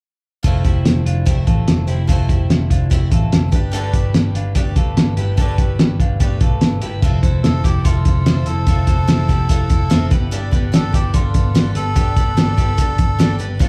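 From 0.4 s, a cloth-damped, thuddy drum kit sits up front, with a fat snare, tight kick and hi-hat; its muffled, gritty sound is rolled off at the top. Beneath it, a muted picked electric bass adds a dark, round low end. Alongside them, a picked twelve-string acoustic guitar shimmers with octave-doubled, boxy parlour brightness as accompaniment, while an electric guitar through a small old amp plays twangy, slightly broken-up arpeggios treated with slapback echo and digital delay. This jangly indie pop fragment, cut from a longer piece, feels youthful and nostalgic in a straight 4/4, moving between Fmaj7 and Gadd9 chords. At 7.4 s a reedy, breathy melodica takes up the melody, its nasal tone carrying until 13.4 s. The performance comes across as a live gig heard through the venue's PA, with light club reverb.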